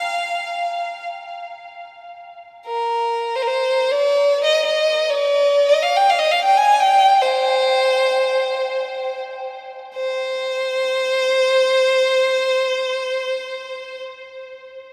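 Soaked in a huge ambient reverb with an 8.2-second tail, this dreamy recording has a melancholic, hypnotic air drawn from the Arabic maqam tradition. A single bowed violin plays alone from 0.0 to 14.0 seconds, sitting up front with a rich, focused tone, expressive vibrato and a touch of delay. The passage is cut from a longer piece.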